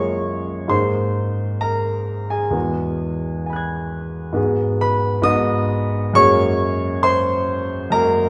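Luminous and serene, this short excerpt of impressionist solo classical piano drifts at 66 BPM in 4/4 with a rubato feel, tuned to A4 = 435 Hz. A clear concert grand carries everything alone from 0.0 to 8.3 s, spanning E2 to G#6 with a deep bass and a long, natural sustain. The harmony moves through rich, open colors, opening on Gbmaj9 and passing through Abadd9, Eadd9 and Abm7 before settling on Gbadd9. The piano sits up front in the mix, yet a wet recital hall reverb with a 1.8-second decay places the listener further back in the room. The result feels spacious and glowing, a single unhurried passage lifted from a longer piece.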